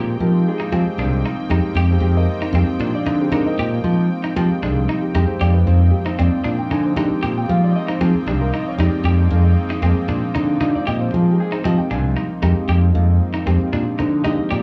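From the first beat, an up-front, bright fingered electric bass, an accompanying reedy electric piano, twangy, compressed stabs of picked clean guitar and a brassy, detuned analog pad holding warbling, chorused chords share a small room on a single Fm11 chord in this nocturnal, intense jazz passage in 7/8 at 231 BPM in F dorian, cut from a longer piece.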